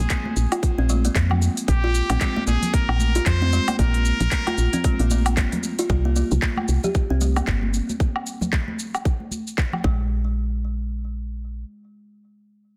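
This meditative, hypnotic organic downtempo excerpt opens with a nasal, straight-muted trumpet solo and hollow, thumb-plucked kalimba arpeggios, both carrying delay, over a round, woody FM bass, bright congas and bongos in the background, a tight, up-front electronic kick, and a tape-warm electronic kit with crisp hats, handclaps, shaker and woodblock. The trumpet drops out at 5.3 seconds, the drums and percussion stop around 10 seconds, and the kalimba follows at 10.3 seconds, leaving the bass carrying on alone until 11.6 seconds in a dense, heavily limited mix with light reverb.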